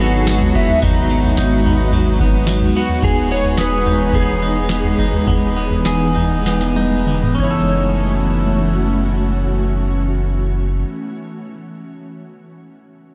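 Dream pop in F# dorian at 93-109 BPM, ethereal and haunting, where a clean lap steel guitar played with slide and volume swells carries the melody through analog chorus and tape echo over an airy, detuned sawtooth pad of sustained chords, twangy picked electric guitar arpeggios with tape echo, and a thick saturated sub bass, while a booming analog drum machine with deep kick and crisp snare plays from 0.3 to 7.6 seconds and closes with a fill from 6.5 seconds as the tempo slows, the mix soaked in huge ambient reverb in this cut from a longer piece.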